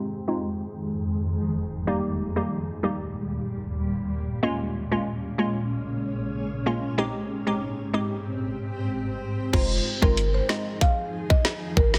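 A bouncy, tough dancehall excerpt opens on a blurred, evolving granular cloud pad pumping under sustained chords and a crystalline, detuned wavetable pluck moving through a filter sweep, before a buzzing, woody marimba melody with digital delay, a deep, boomy 808-style bass and a tight, up-front island pop drum kit with woody snare, crash, hi-hat and kick all arrive at 9.5 seconds in a lush hall and a dense, heavily limited master.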